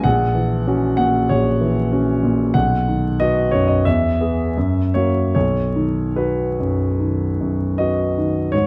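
Flexible rubato phrasing moves through a 4/4 metre in this short, hopeful fragment of a romantic character piece for solo piano, cut from a longer work. The concert grand sits up front with a clear, natural tone and deep bass, playing alone from 0.0 to 8.7 seconds across a span from A#1 to F#5. A moderate recital-hall reverb and a dark, warm production with vinyl crackle give it a warm glow.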